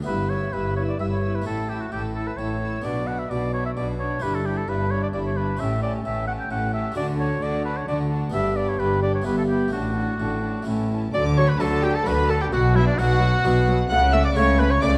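A round, plucked harpsichord opens this brilliant, festive baroque-style concerto movement in D major at 130 BPM in 3/4, joined almost at once by a clear, up-front solo oboe carrying the melody over gut-string, period-style sections, with violins in the background on a high melody and a second line, light-vibrato violas filling the harmony, and nasal cellos and a rich, prominent double bass anchoring the low end, the whole passage cut from a longer piece and heard in a dark production with a wet recital-hall reverb.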